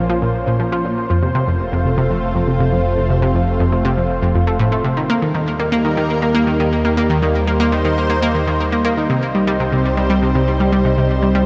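A lush, thick pad of detuned sawtooth and square waves opens this excerpt of ambient, sequencer-driven space music, its slow-attack chords colored by chorus, phaser and a shimmer reverb. Alongside it, an up-front analog pluck plays a riff with a round, detuned sawtooth tone, fast attack and decaying notes, treated with chorus, delay and shimmer reverb. Beneath them a fat analog bass holds sustained low notes in a low register, its detuned sawtooth sound giving the track a solid floor. At 120 BPM in a straight 4/4, the harmony moves from Bbmadd9 to F, then to Eb at 5.1 seconds and Cm at 9.1 seconds, creating a mysterious, cosmic mood. The whole piece sits in a vast, echoing space with a huge wet reverb whose long tail lets sounds hang in the air.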